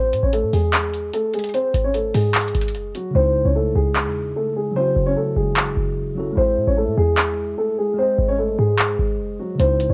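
Melancholic and menacing, this short piece of half-time trap hip hop runs at 149 BPM and is cut from a longer track. A dark, boxy baby grand piano carries the melody up front, its short-sustained notes dulled by a low-pass filter and cassette tape colour, while a punchy, tight 808-style bass with a sine core, a noise layer, a fast attack and a decaying tail sits beside it. The trap drum kit brings handclaps and metallic hi-hats with an electronic, produced edge, re-recorded in a small room and tape-treated, though the hi-hats drop out from 3.2 to 9.6 seconds. At 3.1 seconds a worn, slightly out-of-tune tine electric piano enters quietly as accompaniment, clean and filtered, heard as if through built-in speakers. The harmony cycles through Amaj7(no3), G#, C#madd9 and F#m7, and the whole piece has the light reverb and hazy character of a home cassette recording.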